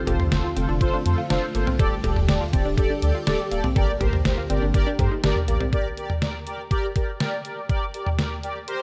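A detuned 8-bit drum machine with a thumpy kick, snare, hi-hat, cowbell and toms drives this melancholic, cool synth-pop excerpt in G minor at 122 BPM, alongside a deep sine-and-triangle sub bass, a lush, phased string machine and a nasal analog pluck playing arpeggios with slapback echo in the background, while a round, detuned synth brass with vibrato sits up front and carries on alone with the drums after 5.7 seconds, all in a dark production with light reverb.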